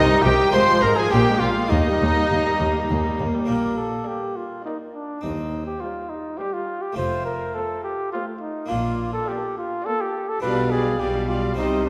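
Brilliant and festive, this baroque-style concerto movement with solo episodes moves at 104 BPM in a straight 3/4, starting in Eb major and turning to Bb major from 3.5 seconds. A mellow, up-front solo trumpet carries the melody with light vibrato and a smooth top, joined above by a close violin section whose gut-string tone has a reedy, period-style edge. A second violin section sits in the background on a supporting line, while a distant, dark viola section and an airy, plucked harpsichord with two sets of strings fill in the accompaniment. The bass is held by a smooth-topped cello section in the background and a bowed double bass section, both played with light vibrato. The harmony passes from Cm through Bb7 to Eb, then moves through Bb, Cm/Eb and F and back to Bb before landing on G7/B near 10.4 seconds. A wet reverb of a church or concert hall surrounds the ensemble, and this passage is cut from a longer piece.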